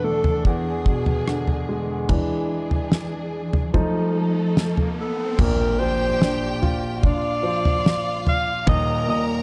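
Light reverb and a small room ambience frame a warm production in this tender, emotional pop ballad, which is cut from a longer piece. A breathy alto saxophone carries the melody in a pop style, with light vibrato, scooped notes and a smooth top. Beneath it, a clear, present baby grand piano plays the accompaniment, and a bowed studio string section holds sustained chords with vibrato and expressive portamento. A damped 70s drum kit sits up front, dry and polished, with a fat snare, tight kick, dark cymbals, rim clicks and toms. The piano takes a solo turn from 2.1 s, and an electronic riser enters at 3.7 s. At 5.4 s an impact lands as the strings give way to a focused, close violin section playing a second line.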